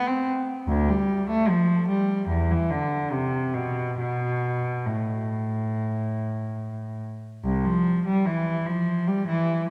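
Classical, baroque-style suite movement for unaccompanied cello in A minor, flowing and dance-like at 68-75 BPM in 4/4 with a free, rubato feel. A single bowed cello plays alone from 0.0 to 9.7 seconds, its reedy, nasal gut-string tone shaped in period style and ranging from C2 to C4. The cello sits up front in a wet church reverb with a long 2.8-second decay, and this excerpt is cut from a longer piece.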